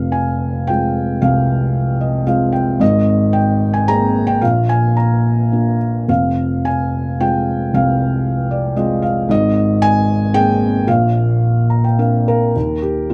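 Hopeful and warm, this brief classical piece for lyrical solo piano moves in a rubato 3/4, hovering between 102 and 117 BPM. A felt-muted upright piano carries everything alone from 0.0 to 13.1 seconds, its soft, dark tone sitting up front with the thick felt and audible action noise giving it an intimate, close-up character. The harmony circles from Fm through Abadd9 and Bb, returns to Fm, then passes through Abadd9 and Bbadd9 before settling on Eb at 12.6 seconds. Short piano fills slip between the chords, the first at 1.8 seconds and the last at 11.4 seconds. Light reverb and closely placed, detailed microphones keep the sound mellow and personal, like a private moment lifted from a longer piece.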